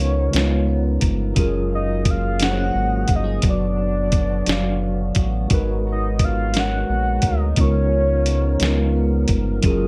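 Sensual and intimate, this slow six-eight R&B excerpt moves at 58 BPM in dotted quarters with a straight feel and a dark production under light reverb. A soft, octave-layered synth lead carries the melody between C#5 and F#5, its round, sub-octave tone dressed in chorus, slapback echo and plate reverb, and it falls silent at 9.3 seconds. Beneath it, a mellow, clean tine electric piano supplies the accompaniment, while a percussive tonewheel organ holds sustained chords in the background with key click, chorus vibrato and a slow rotary speaker. An electric guitar at the edge of break-up plays a twangy, fingered second line, also tucked into the background with subtle chorus. A rubbery, hollow square bass sits up front with a filter pluck and moving notch, joined from 0.3 seconds by a gritty, sampler-style soul drum kit of thumpy kick, fat snare and hi-hat re-recorded in a large room. The harmony drifts from C#13 through F#maj9, Bm/F# and G#m9 before returning to C#13.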